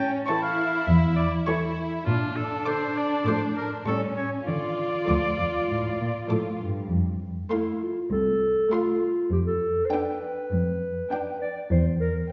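Mischievous and sneaky, this playful, whimsical film cue moves at 100 BPM in a straight 4/4, starting in D minor before turning to F major at 6.9 s. A violin section carries the high melody, its rich, focused tone sitting distant in the mix, while a second violin section, an oboe and a smooth, even viola section fill the middle with a second line and accompaniment. Beneath them, the cello section anchors the bass with a lush, expressive sound, adding vibrato and portamento. The bright oboe with its soft attack sings its line up front until 6.3 s, and a dark, roomy clarinet takes up a second line from 7.5 s. The harmony travels from A through Bbmaj7, Dm/A and A7 to Dm, then from F to G7/F and C/E, all set in a scoring-stage reverb heard from further back in the room, with the highest frequencies rolled off.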